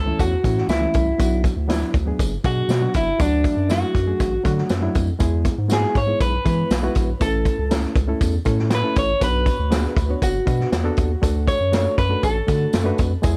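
A dry, close-sounding cut from a longer piece of upbeat, danceable 1960s-style soul, built on a repeating A, Bm, D, E progression. A picked, slightly broken-up electric guitar sits up front with tape echo and carries the melody as a solo, while a round, deep analog bass underpins it and a barky, reedy electric piano with light overdrive fills in the accompaniment. A punchy vintage acoustic kit with a medium-tuned snare and rolled-off top drives the groove, and a jingly tambourine sits in the background.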